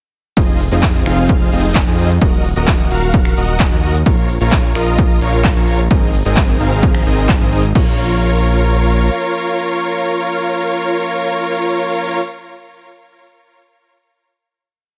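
A huge, detuned supersaw riff in dotted-rhythm chords leads this euphoric, emotional festival progressive house piece, pumping with sidechain and trailed by delay over a fat analog sawtooth bass, a punchy overdriven four-on-the-floor kick and a crisp big-room kit of hi-hats, shaker, snaps, claps and crash through the drop until the drums stop at 7.8 seconds, leaving the synths to ring out on a final Bb minor chord in a dry, up-front mix.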